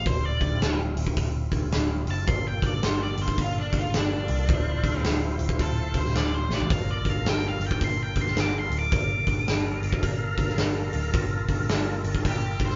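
A live-in-one-room sound with light reverb and a dull, rolled-off top end frames this gritty, smoky blues rock power trio and southern rock cut from a longer piece, swinging at 108 BPM in 4/4 as it moves between Dm7 and Gm7. A dark, picked octave-fuzz lead guitar solos throughout over thick, overdriven tonewheel organ chords with key click, slow rotary speaker and chorus vibrato, while a round, foam-muted vintage bass sits low. The huge arena drum kit sits up front with a punchy kick and a medium-tuned snare in a big natural room, and throws in a fill at 6.4 seconds.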